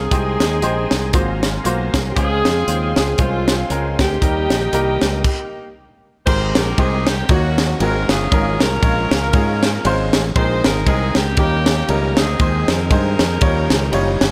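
A swung eighth-note groove at 117 BPM in 4/4 drives this jubilant, uplifting stretch of uptempo gospel in Ab major, cut from a longer piece. A tight funk drum kit sits up front with a high-tuned snare, a tight kick, hi-hat, ride and crash in a small room, while a fingered electric bass adds a bright, growly, direct low end. A clear baby grand piano with short sustain fills in the accompaniment, and a tonewheel organ, full and shouting with light overdrive, key click, chorus vibrato and a rotary speaker, holds sustained chords very quietly beneath. A distant, roomy saxophone section carries the melody in a tight jazz style with light vibrato, joined at first by a breathy, mellow alto saxophone in the background and a reedy, shimmering musette accordion. The band stops at 5.2 seconds, the alto drops out at 5.7 seconds, and from 6.3 seconds the second section moves through richer chords such as Abmaj9, Bb9sus4 and Eb9 under light reverb.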